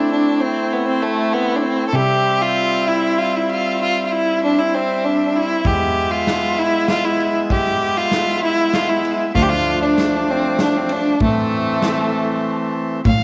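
Bittersweet yet festive, this klezmer fragment in 3/4 puts a rich, biting violin with vibrato up front over a reedy, hollow accordion and an earthy bowed cello, while a gritty, saturated acoustic drum kit of kick, snare and ride enters at 5.6 s, set in a wet echo chamber before a brief break at 12.4 s.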